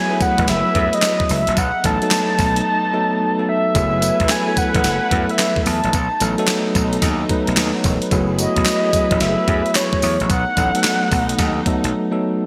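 Punchy and confident, this short cut from a longer new jack swing piece rides a swung sixteenth-note groove in bright 1980s-style digital production, washed in a lush hall reverb. A mellow, horn-like synth lead carries the melody with a round, warbling, detuned sawtooth tone, soft attack and chorus, while a bell-like tine electric piano sits up front with clean accompaniment. A muted, veiled string section holds sustained chords distantly in the background, moving between F#m11 and B7. A gritty slap bass with overdrive adds a punchy low end, and a crisp 8-bit drum machine with a thumpy kick, fat snare, hi-hat, tambourine and handclaps, all bathed in gated reverb, drives the track, dropping out briefly from 2.7 to 3.8 seconds. Faint live handclaps sit barely audible beneath, and the bass, drums and lead give way to a short break at 11.9 seconds.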